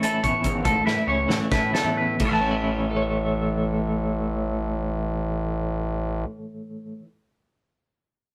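Math rock and midwest emo in a bright, intricate mood, this short excerpt moves in 7/8 at 255-295 BPM counted in eighths, opening on Amaj7 and settling on A major at 2.2 seconds. A clean, twangy electric guitar picks bright arpeggios over an up-front, compressed twelve-string electric guitar with tremolo, while a gritty, saturated synth bass with a resonant filter pluck sits prominently underneath from 0.2 seconds. As the music slows down over the first 2.2 seconds, a loose indie drum kit with dark cymbals and a punchy kick plays a fill before dropping out at 2.3 seconds, all captured as a rough rehearsal-room recording with moderate reverb.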